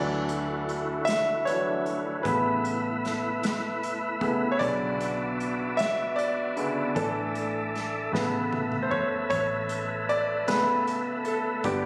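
A slow six-eight pulse at 51 BPM, counted in dotted quarters, carries this tender, romantic pop ballad fragment, cut from a longer piece. A clear, polished concert grand piano sits up front with deep bass and short sustain, leading as a solo from 0.0 to 11.9 seconds over chords moving from Dadd9 through Aadd9, Bmadd9 and Asus4 before settling back on Aadd9. Beneath it, a thick, percussive tonewheel organ holds sustained chords with key click and third harmonic percussion, lightly overdriven and spun through a fast rotary speaker. A dark, round, foam-muted fingered electric bass anchors the low end, while an acoustic drum kit played with bundle sticks, featuring a punchy kick and a medium-tuned snare, enters at 0.3 seconds and plays a fill between 8.1 and 9.3 seconds. The whole is heard as if captured on a phone in a moderate concert hall, with added studio reverb and compression.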